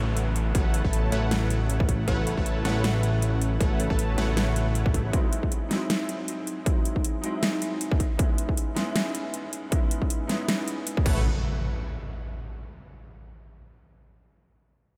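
A half-time future bass groove at 157 BPM with a light 16th-note swing rides a distorted, up-front electronic kick and a dubstep kit of huge snare, crash and metallic hats, in a playful, bright A lydian mood. A fat, nasal, saturated analog bass and a punchy, detuned supersaw stab with 12-bit sampler grit both pump under sidechain and drop out at 5.1 seconds, while the drums continue and a warm grand piano with ensemble chorus and analog delay carries chords through G#7b13 and C#m9 in light digital ambience. A downlifter and impact open this excerpt and return at 11.1 seconds, where the bass and stab briefly reappear on the A69 chord.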